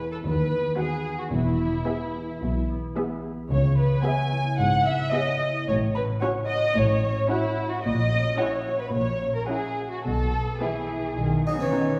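Heard from further back in a wet scoring stage, this 110 BPM cinematic cue in 4/4, tuned to A4 = 436 Hz, has a mischievous, whimsical air, with muted, veiled strings played con sordino. A second line of violins sits up front while the violin melody hovers in the background, and dark violas, distant cellos and double basses fill in beneath a ringing, thumb-plucked concert harp playing arpeggios, moving from B/D# through E, C#m7 and F#7/A# toward B. At 11.5 seconds a full Flemish-style harpsichord takes a brief melody, joined by a clear solo oboe and a pure, mellow flute in the background.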